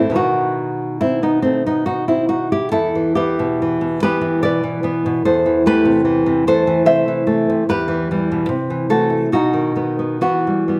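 A moderate recital-hall reverb, lingering about 1.5 seconds, surrounds an up-front nylon-string guitar in this short cut from a longer romantic piece for solo classical guitar. In E minor and 3/4 time, the fingerpicked acoustic guitar moves freely with rubato at roughly 64-76 BPM, ranging from low E2 up to E5. The wistful, melancholic harmony circles between E minor, A minor and B, closing back on E minor near 10.2 seconds.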